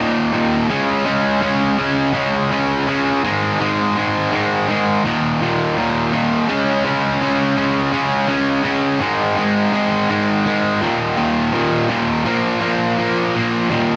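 A distorted electric guitar opens this rock excerpt on its own and carries it from 0.0 to 14.0 seconds, playing at a steady 83 BPM in straight 4/4. The mood is cathartic and bittersweet, and the guitar is tuned slightly below standard pitch, to A4 = 438 Hz. Its bright, picked tone is double-tracked and sits up front, spanning Eb2 to Db4 as it cycles through Eb5, Db5 and Ab5, then comes back around before closing on Bb5 near 12.3 seconds. A moderate studio reverb gives the guitar a bit of room. The dense, heavily limited modern master keeps the sound thick and forceful in this short passage cut from a longer piece.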